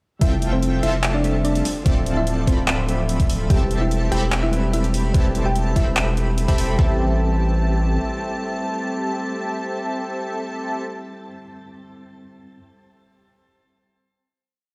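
Emotional and bittersweet, this short future bass piece moves in a half-time feel, opening straight into a drop over Fmaj9, Dm7 and Am7/E before settling on a final Am7 chord at 6.8 seconds. A round, tine-like synth pluck carries a repeating riff melody in octaves, its dark FM tone thickened with chorus and tape echo, while a punchy, detuned supersaw stab throbs in tempo with held chords and syncopated pushes under a filter sweep. Behind them, a worn, slightly out-of-tune electric piano plays rootless chords through what sounds like built-in speakers. An airy, dreamy lead doubles the chords with soft, vibrato-laden arpeggios, and a very quiet chamber string section adds an earthy sustained pad. A deep, saturated sub bass sits up front until 8.0 seconds, pumping with sidechain alongside the pluck, stab, electric piano and lead, while an overdriven knocking kick and a dubstep kit with bright hats, hat rolls and handclaps drive the half-time beat until about 6.9 seconds. 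The mix carries a light digital ambience and sounds as if played on a big system in a bare stone room.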